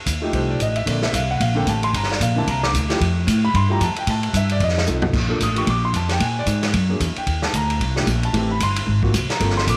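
Swinging eighths at 225 BPM drive this warm small-group swing-and-bop jazz fragment, where a woody, growly pizzicato upright bass with tube saturation sits up front beside a punchy vintage drum kit of ride, hi-hat, snare, toms, kick and crash, while an intimate concert grand with audible action noise and deep bass comps through rich extended chords, and a drum fill at 4.9 s ushers the shift from F major to Bb major at 5.1 s inside a moderate echo-chamber reverb.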